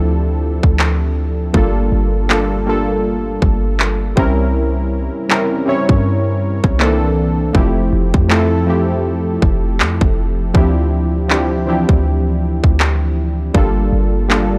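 Overdriven trap drums with a hard-clipped kick and handclaps sit up front from 0.6 s in this longing, late-night contemporary R&B excerpt at 80 BPM in D minor, swung on the sixteenths, over a deep, boomy sine 808-style bass and round, detuned sawtooth-and-square analog keys with chorus and a sub octave, moving through Dm11, Gm9, C7b9 and Fmaj9 in a dry, gritty digital ambience.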